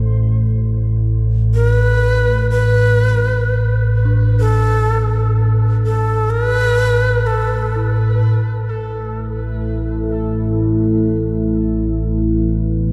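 A breathy, bamboo-toned shakuhachi carries a brief, reedy melody with vibrato and a tongued chiff from 1.5 to 8.0 seconds, trailed by tape echo, over an ominous, rumbling drone that sits up front from the very start. In this dark, desolate ambient fragment, a very quiet, eerie FM synth bell adds inharmonic arpeggios from 4.1 seconds, and a moody, evolving pad with chorus enters at 9.1 seconds with sustained chords. The whole piece sits in a vast, echoing cathedral space with the hazy grain of cassette tape.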